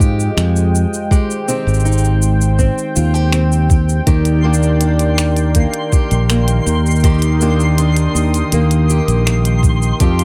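A short excerpt of pastoral, hopeful folktronica opens with everything but one part sounding together: a fingerpicked acoustic guitar plays dark, woody arpeggios with a boxy, old-string character, touched by digital delay and plate reverb. Alongside it, a smooth, detuned sawtooth pad holds soft-attack chords with chorus and a long release, moving from Fm9 to Abmaj7 and settling on Ebmaj7 at 4.1 seconds. A fingered electric bass sits direct and up front, while a soft, tape-tinged electronic kick anchors a steady, straight groove. A quieter organic electronic kit adds finger snaps, a shaker and crisp hi-hats, both drum parts carrying the close sound of a small room. At 4.4 seconds a faint, twinkling granular texture enters high above, a sparkling FM shimmer an octave up with its own reverb, all within a lightly reverberant space.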